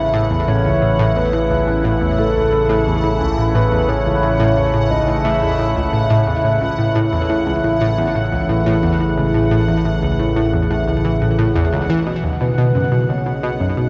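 A bright, up-front analog pluck drives this expansive, luminous piece of sequencer-driven space music, repeating a round riff built from detuned, wave-folded sawtooth and pulse tones with a fast attack and a filter sweep on each decaying note. Behind it, a sweeping resonant pad holds sustained chords that evolve slowly through a filter swell, shimmering with chorus and phaser. Underneath, an analog drone of vintage pulse-width-modulated tone anchors the bass, roughened by transformer saturation. A high, bubbling texture of random filter steps sits quietly in the background, while a soft, mellow synth lead layered with a sub octave sings the melody with vibrato, drops out at 6.2 seconds and returns at 12.4 seconds. The harmony rests on A before shifting to Badd9 at 12.1 seconds. This segment of a longer piece is bathed in a huge, wet ambient reverb and carries the worn, warbling pitch drift of old cassette tape.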